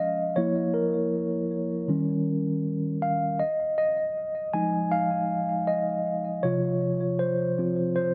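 A gently swung sixteenth-note feel in four sets the pace for this brief, moody R&B fragment, cut from a longer piece. A lone tine electric piano carries everything, its mellow, clean tone heard through its built-in speakers and placed up front, with a touch of digital delay trailing its notes. It opens by moving from Bbm/F to Eb7, then at 3.4 seconds settles onto Fm7 before reaching for Dbmaj7 at 6.4 seconds, giving the passage a sensual glow. A lush hall reverb surrounds the keys, and the dark, warm production carries a faint mains hum underneath.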